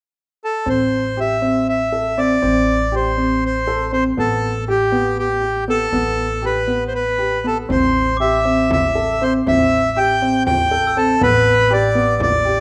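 An uneven 7/8 pulse with a straight feel drives this contemporary chamber piece, cut from a longer work, giving it a hypnotic yet restless character. A reedy, mid-forward accordion carries the melody from 0.4 s, sitting up front over a dark baby grand piano whose worn, intimate arpeggios come with audible action noise. Beneath them, a woody, thumpy pizzicato upright bass holds a low A as the harmony moves between A minor, G add9 over A and A minor seventh. At 7.7 s a deep, large frame drum enters in the background, followed at 8.2 s by a bell-like glockenspiel struck with hard plastic mallets, ringing softly behind the ensemble. A moderate scoring-stage reverb gives the whole a sense of space.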